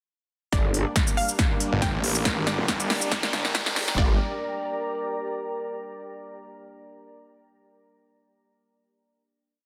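A swung half-time 4/4 groove at 139 BPM drives this aggressive, chaotic heavy wobble dubstep piece in G minor, where two punchy big-room electronic drum kits with crisp hats and shaker pound through a build from 0.5 seconds as a growling, wobbling bass and a snarling distorted saw bass with chopped phrases push up front, a bright supersaw chord bed pumps in the background beneath a tape-echoed unison pluck riff, a very quiet riser adds transition effects, and a deep, moody ambient pad with slow attack carries on alone into the final chord until 5.7 seconds, the mix sitting in a lush hall reverb under a dense, heavily limited master.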